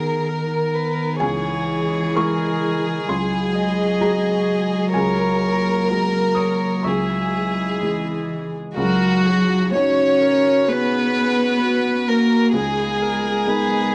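Reflective and fragile, this neoclassical piece for piano and strings moves at a slow 64 BPM in 4/4 with a rubato feel, cut from a longer work. A chamber violin section carries the melody up front, its bowing sul tasto with a soft attack and light vibrato, while a single cello plays a woody second line beneath it with vibrato of its own. A lone viola adds smooth, floating accompaniment with a pure tone, and a felt-muted upright piano sits mellow and intimate, its action noise audible. In the background a nostalgic, lo-fi pad warbles with detuned chorus and its own reverb, holding sustained chords that swell in slowly and fade long. The harmony circles C# minor over a held C# bass, shifting to a second passage at 8.8 s before returning to G#madd9/C# at 12.5 s, all within a dark, gently reverberant mix.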